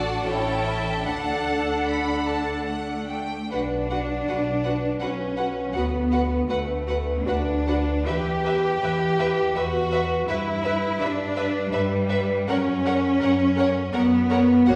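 A smooth, up-front cello section carries the bass of this lyrical, slow romantic movement for string orchestra in 3/4 at 68-85 BPM with rubato, alongside a distant, vibrato-laden violin melody, a close, focused second violin line, close viola accompaniment and a rich, even double bass section, as the music moves from D major into B minor at 3.5 s and settles on F# at 12.5 s, all bathed in the reverberant glow of a recital hall.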